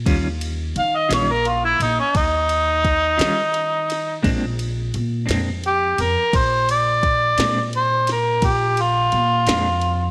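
A slow 12/8 blues at 57 BPM in Bb mixolydian, this soulful, gritty excerpt rests on a glitchy electronic drum kit with a soft kick, tiny snare and ride cymbal, a woody, dark pizzicato upright bass, and a clean, twangy picked electric guitar colored by tremolo, moving from Eb9 to Bb9 at 4.2 seconds. Up front from 0.8 seconds, a mellow, vintage harmonica with overdrive takes a jazz-style solo, its scooped notes and light vibrato ranging from Db4 to F5. Light studio reverb gives the band a sense of room.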